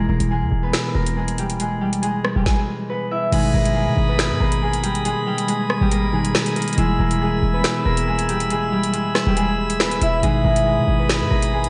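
Dark, tense half-time drill hip hop, cut from a longer piece, led by an up-front, ringing concert harp that is fingerpicked and softened by a low-pass filter and diffuse ambient delay, over a mellow, clean tine electric piano and a punchy, tight 808-style bass with a fast attack and decaying tail. The electronic drill kit arrives at 0.2 s with a knocking kick, woody snare, metallic hats, finger snaps, rim clicks and crash, and at 3.3 s a light chamber organ on sparkling flute stops adds sustained chords with a soft chiff. The dreamy mix is soaked in plate reverb and digital ambience, with vinyl crackle and a dark, rolled-off top end.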